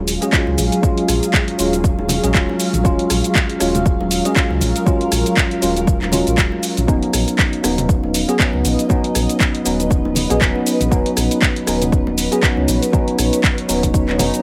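Deep house with a late-night, hypnotic pull, this excerpt pairs worn, slightly out-of-tune tine electric piano stabs, up front with analog chorus, dub echo and sidechain pumping, against a deep sine sub bass with octave, a cloudy, detuned granular pad that blurs and evolves behind them, an overdriven electronic kick re-recorded in a large room, a punchy, tape-warm analog drum machine of handclaps, hi-hat, rim click and shaker, very quiet acoustic bongos and congas, and a faint electronic swell arriving at 14.1 seconds.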